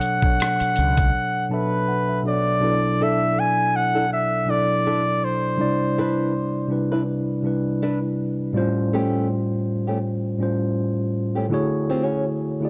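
This introspective, soulful R&B and neo-soul piece moves at a relaxed 81 BPM in 4/4 with a light swing on the sixteenths, and it is cut from a longer piece. A smooth-topped, punchy flugelhorn carries the melody up front in a pop style, while a mellow, clean tine electric piano, heard through its built-in speakers, supports it throughout. A gritty, compressed sampler-style drum kit with a thumpy kick, hi-hat and rim click, joined briefly by a round, dark fretless bass, plays only until 1.1 seconds, when a break opens for an electric piano fill. A dark, thumb-plucked flamenco guitar enters at 3.0 seconds as a soft second line, and the flugelhorn drops out at 6.7 seconds, leaving keys and guitar over harmony that drifts from Bm7 through Cmaj9 and A7alt to Dmaj9#11. Light reverb and digital ambience give the dark, warm production a gentle sense of space.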